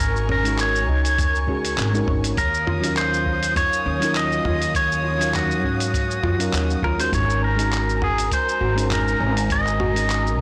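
A swung sixteenth-note groove in 4/4 drives this smooth, warm sunset chillout excerpt, carried by a gritty, sampler-style soul kit with handclaps, hi-hat, shaker and toms, an overdriven electronic kick sitting deep in the background, and a woody pizzicato upright bass. Up front, a twangy pedal steel guitar sings the melody with fingerpicked slide and volume swells through digital delay, over a soft, full-bodied FM electric piano, a dark, intimate bowed string section with light vibrato, and a gentle, wave-folded pluck arpeggio that enters at 0.3 seconds. The whole recording sounds blown-out and overdriven, moving between Ab9sus4 and Ebm9.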